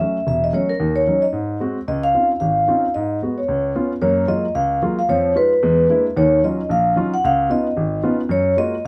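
Jazz with a swinging, relaxed feel, this brief excerpt is cut from a longer piece and runs just under nine seconds. A vibraphone played with medium mallets carries the melody, its metallic, ringing tone colored by a slow motor vibrato and a plate reverb that gives it an airy shimmer. A grand piano supplies the accompaniment, intimate and natural, with its action noise audible beneath the harmony. Both instruments sit up front in a moderate studio room. The harmony moves through rich extended chords, from a ii–V into a major ninth, then shifts to a new key at 4.0 s, where a fresh progression of half-diminished, sharp-eleven dominant and minor ninth chords resolves back to a major ninth at 8.3 s.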